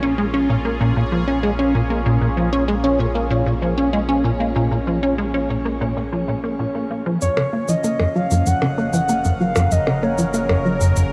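A punchy, funky plucky analog bass riff sits up front in this expansive, hypnotic fragment of sequencer-driven ambient space music in Bb minor at 96 BPM, wrapped in shimmer reverb and delay over a detuned, sweeping resonant pad, a deep round analog bass and a very quiet bubbling stepped-filter texture, all bathed in a huge ambient reverb, until a shimmering, retro pulse-width lead and electronic cabasa and percussion blips enter at 7.2 s as the harmony moves from Bbm7 to Gb.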